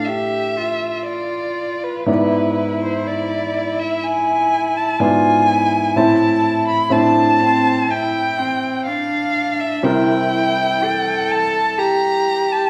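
A rubato 4/4 pulse at 62 BPM carries this elegiac, solemn slow movement for piano trio in A minor, cut from a longer piece. Up front, a single bowed violin sings the melody with expressive vibrato and portamento, while a rich, more distant cello traces a smooth, even second line beneath it, and a clear, polished baby grand piano supplies the accompaniment. The harmony moves from Dm/A through E7/G# to Am and then C7, all set in a recital hall's wet reverb.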